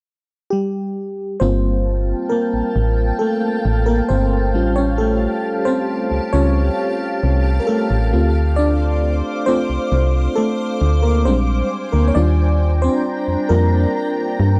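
A straight 4/4 pulse at 67 BPM carries this moody, longing R&B excerpt in G minor, where a dark, full-bodied FM electric piano with tremolo enters at 0.5 s and takes a solo from 1.4 s, a punchy, round FM bass arrives up front at 1.4 s, and a cloudy, evolving granular pad with its own reverb drifts in at 1.9 s over chords moving from Gm9 through A7alt, Dm7 and Bb13 to Ebmaj7, all heard through a dry, gritty cassette recording.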